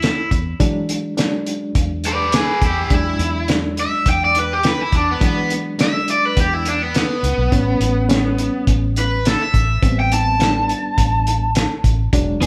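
Rollicking and laid-back, this straight-eighth soul blues excerpt moves from E7 to A7 and then Am7, led by a bright, overdriven cranked stack guitar soloing up front with spring reverb. Underneath sit a dark, round, foam-muted electric bass and a muffled, cloth-damped drum kit with a fat snare, tight kick and rolled-off top. A reedy electric piano with fast tremolo and light overdrive joins at 0.6 seconds, and a clean, compressed electric guitar adds a brief stab at 12.4 seconds, all captured live in a small room.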